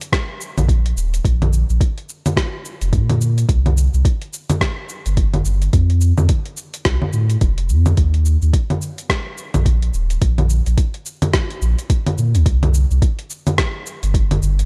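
This organic downtempo groove moves at 107 BPM in 4/4, with a loose 16th-note swing that gives it a relaxed, unhurried sway in C dorian. A dusty, soul sampler-style drum kit runs from the start, its congas, hi-hat, rim click and shaker sounding compressed and gritty, pushed through overdrive and set up front in a bit of studio ambience. An electronic kick drum joins at 0.1 seconds, a soft, produced thump that is also overdriven and close in the mix. From 0.6 seconds a deep sub bass fills the low end between Eb1 and Bb2, its round, sine-like tone speaking with a fast attack and sustaining with a mellow body. The production is dark and warm, with little reverb, leaving a warm, earthy mood across this short section cut from a longer piece.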